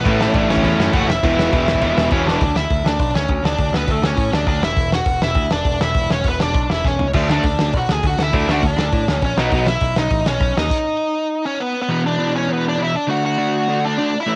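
Driving straight 4/4 at 203 BPM, this upbeat, rowdy punk rock excerpt in E mixolydian pairs a fat-snared, loose indie drum kit and a punchy, bright picked electric bass with riffs from two distorted electric guitars (one double-tracked and very quiet) and an up-front, hollow-bodied overdriven semi-hollow guitar, while a smooth overdriven lead guitar carries the melody through cassette-tape saturation and analog delay; the drums and bass halt at 10.7 s before the semi-hollow riff returns beside the lead at 11.9 s, captured as a lightly reverberant home cassette recording.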